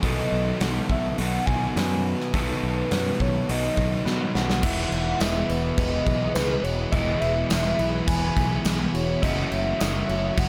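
A straight 4/4 pulse at 105 BPM drives this blissful, dreamy shoegaze and dream pop rock excerpt in E major, led by a punchy, gated 80s drum kit up front and a growling fingered bass with overdrive. In the background, a dark fuzz guitar and a hollow-bodied semi-hollow guitar with reverse reverb churn out riffs, while a twangy, direct-recorded clean guitar spins lushly chorused, delayed arpeggios beneath a round sine lead melody with vibrato, chorus and delay. After a drum fill, the harmony moves from B7 to Emaj7 at 4.6 seconds, where a silky, warbling string machine enters with sustained chords; a jingly tambourine plays from 5.2 to 9.9 seconds, all within light reverb and small room ambience.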